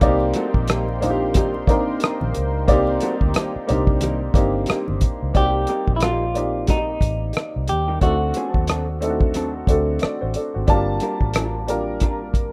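Lightly reverberant and rough, like a home demo, this short neo-soul R&B fragment has a smooth, late-night mood and a gently swung sixteenth-note feel. Up front, a woody, slightly detuned upright piano carries the accompaniment, while a dry, cloth-damped drum kit with a tight kick, rolled-off top, hi-hat and rim click sits just as close, over a round, foam-muted vintage electric bass. A thick, warbling sawtooth pad with chorus hovers in the background and very quiet, low-tuned congas played with soft hands add texture, both dropping out around 5.2 seconds. Throughout, a compressed hollow-body jazz guitar plays a dark, clean second line. At 5.4 seconds a fingered semi-hollow electric guitar, treated with harmonic tremolo, steps forward with a brief melody that ends at 9.0 seconds, as the harmony moves from Cm7 to D7 before settling on Gm7 near the end.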